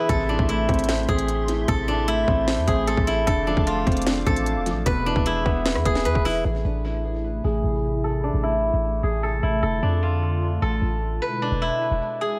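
A silvery, fingerpicked steel-string zither carries the melody up front through tape echo in this brooding, menacing trap excerpt at 151 BPM in a half-time feel, set in A harmonic minor over an Am, F6, E progression. A trap kit with a hard-clipped kick, sharp snare and 12-bit sampler grit drops out at 6.3 seconds, and a dark grand piano with audible action noise follows at 6.5 seconds. A boomy 808-style bass and a hollow, flute-like pad warbling with ensemble chorus carry on into a filter sweep and a brief break at 12.0 seconds, all in a dry, echo-heavy mix.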